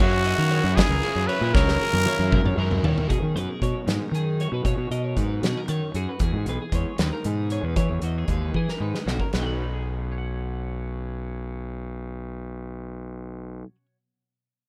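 Math rock and midwest emo in 6/8 at 77 BPM in B major, bright and wistful, this rough home demo fragment opens with a raspy, growling trumpet melody with slapback echo and a biting, double-tracked overdriven guitar riff that both stop by 3.1 seconds, over a clean, compressed twelve-string electric guitar accompaniment, a twangy twelve-string playing lush chorused arpeggios in the background, a round fuzz-driven fingered bass up front, and a loose, punchy indie drum kit with dark cymbals and two fills that drops out at 9.5 seconds, all moving through F#9, B69 and Emaj9 chords in a dry mix.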